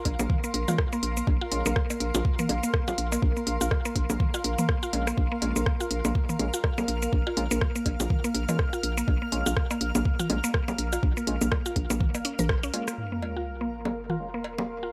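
A swung 123 BPM 4/4 pulse from a soft, up-front electronic kick and a clicky, low-pass-filtered minimal kit of hi-hat, rim click and shaker drives this sparse, cool minimal techno cut in Bb minor, where a hollow, bouncy FM bass pumps beneath a woody, mallet-like synth pluck riff coloured by chorus, phaser and dub echo, overdriven electronic cowbell, bongos and toms ring out through dub echo, a mellow organ stab flickers at 0.7 s and returns in the background from 4.9 s, a cloudy granular pad blurs overhead in its own reverb, and the kick and bass fall away just before a sub drop arrives at 13.0 s.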